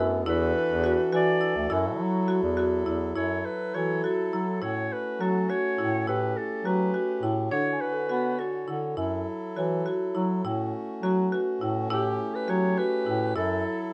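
Contemporary chamber music in a pensive, restless 5/8 at 206 BPM in F# minor, this excerpt sets a breathy, jazz-style bass clarinet up front on the bass beneath a clarinet melody with vibrato that pauses at 8.8 seconds and returns at 11.9. Woody marimba arpeggios with a percussive edge sit among a reedy, breathing harmonium holding sustained chords, while a very quiet, bell-like celesta adds a brief touch at the opening and returns with delicate texture at 3.7 seconds. The harmony moves through E9sus4, F#m7, A6 and Dmaj7 in a wet studio ambience.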